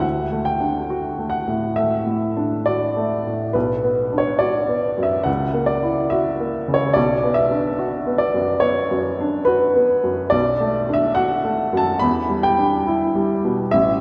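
Rubato phrasing stretches and relaxes a slow 4/4 pulse around 70 BPM in this nostalgic, dreamy romantic nocturne for solo piano, cut from a longer piece. A single upright piano carries the whole 14 seconds, spanning A1 to B5 with a woody, vintage tone, short sustain and a smooth, up-front presence. Its notes bloom into a wet church reverb with a 3.2-second decay, casting a hazy halo around each phrase. The harmony moves from D to B minor, passes through F#7 over C# and returns to B minor, then settles on Bm7 before closing on Em7 at 12.0 seconds. Tuned slightly high at A4 = 441 Hz, the recording feels intimate yet spacious, like a private memory played back in a vast, echoing hall.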